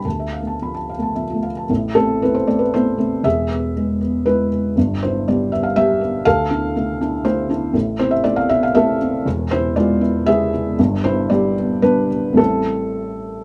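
Neoclassical minimalist piano in A minor, wistful and intimate, where a solo felt-muted upright piano plays up front in a rubato 3/4 at 106-122 BPM, its dark, mellow tone carrying audible action noise through a moderate studio ambience as the harmony cycles from Dmadd9 through Am, E and G before settling on Am7 at 12.4 seconds in this short passage cut from a longer piece.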